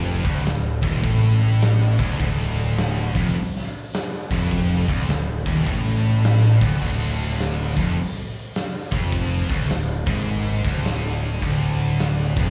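This sounds like a live club gig heard through the venue's PA, with club reverb hanging around the band. It's a short, ominous, sludgy stretch of stoner and doom metal at 104 BPM in 4/4, with a swing on the eighth notes and everything sitting on D minor. A bright, double-tracked high-gain guitar carries the riff with distortion and a slapback echo. Alongside it, two dark, very quiet fuzz guitars play the riff in the same low register. A growly, overdriven fingered bass with its own fuzz sits below them. An oversized, low-tuned acoustic kit comes in at 0.2 s, gritty and up front in a big, pumping room, with a punchy kick, a fat snare, hi-hat and dark crash cymbals.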